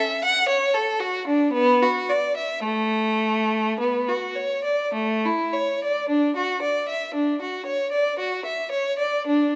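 A clear, bowed solo violin carries this short passage from a baroque-style suite movement for unaccompanied violin, played by one player from 0.0 to 9.5 seconds. The mood is dance-like and radiant, set in triple metre with a flexible, rubato feel. Its tone is smooth and even, colored by vibrato, and it ranges from A3 up to F#5 while sitting up front in the mix. The opening phrase is heard, then restated from 6.1 seconds. A moderate recital hall reverb surrounds the instrument, and the overall production leans dark and warm, with the passage cut from a longer piece.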